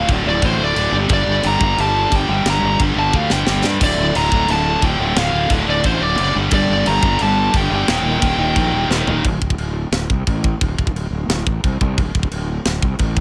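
A half-time heavy metal groove drives this dark, relentless excerpt, where a smooth overdriven lead guitar carries the melody over three bright, picked rhythm guitars (one overdriven, one double-tracked, one scooped and high-gain) churning riffs in the background until 9.2 s, while a growly fuzz fingered bass and a tight, up-front drum kit with a high-tuned snare, bright china, crash and splash cymbals, toms and fills carry on alone to 13.2 s in a dry room.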